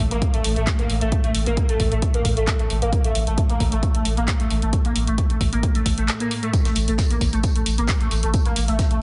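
Heavily compressed and radio-like with light small-room ambience, this hypnotic, intense stretch of driving peak-time techno is cut from a longer piece and rides on an up-front, heavy electronic kick under layered handclaps and hi-hats re-recorded in a large room. A deep, saturated sub bass with overdrive and sidechain pumping anchors the low end, while a gritty, screaming synth lead, guitar-like with phaser, chorus, vibrato and delay, drives the riff above a swarming, detuned granular drone in the background. At 6.5 seconds a dry, damped 70s acoustic kit slips in far back with hi-hat, a medium-tuned snare and tambourine.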